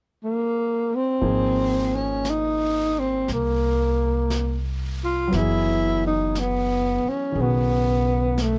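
A breathy tenor saxophone opens this late-night jazz ballad alone, its whispered, intimate tone carrying a tender melody with vibrato, soft attacks and scooped notes. At 1.2 seconds a warm concert grand piano, pizzicato upright bass and brushed drum kit enter together, settling into a slow 59 BPM swing in 4/4. The piano's natural, deep-bottomed accompaniment moves from an Ab69 chord through Gb9sus4 to Badd9, while the woody upright bass sits up front beneath it. The drums stay far in the background, with brushed snare and hi-hat lending an airy, polished studio-room touch. Light reverb and a dark production give the fragment a hushed, smoky intimacy, with the saxophone leading throughout until the piece is cut off at 8.6 seconds.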